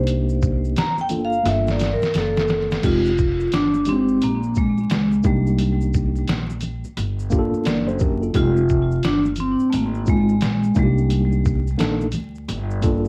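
A ringing, metallic vibraphone with slow motor vibrato and tape echo leads this cool, mellow jazz-hop excerpt until 11.4 seconds, over a mellow tine electric piano, a woody pizzicato upright bass, a gritty, pitched-down sampler-style drum kit with a thumpy kick that plays a fill from 1.5 to 2.8 seconds, and bright maracas and congas in the background, all set in a dry home cassette recording with vinyl crackle.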